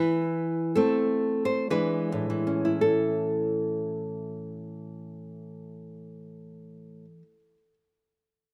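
A solo nylon-string guitar opens this brief cut from a longer romantic classical piece, fingerpicked and placed up front with a warm, fresh-stringed tone. The mood is intimate and passionate, moving in a flowing three-beat metre with a free, rubato feel. The opening passage slows as it moves from an A minor chord over E to E7, then settles on A major at 2.8 seconds, where a second passage begins. The guitar ranges from A2 up to C5 and sounds until 7.7 seconds. Recorded outdoors, the performance carries only a light reverb, keeping the sound close and personal.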